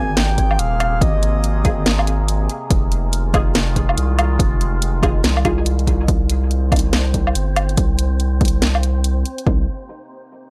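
A half-time deep dubstep groove at 142 BPM with a 16th-note swing, in C minor, this dark, cavernous excerpt rides a punchy electronic kick, a garage kit with a cracking, tape-warm snare, hi-hat and woodblock, and a thick, saturated sine sub bass that takes a filter sweep from 6.1 seconds. A soft, breathy flute-like lead with chorus, tremolo and dub echo sings briefly at the top over an overtone-sweeping, detuned drone and muted, mellow dub chord stabs with phaser and echo moving from Abadd9 to Fm7. At 6.4 seconds an airy, wind-like tuned noise texture drifts in beneath a gritty, dry hardware sound with digital ambience, before the harmony settles onto Cm7.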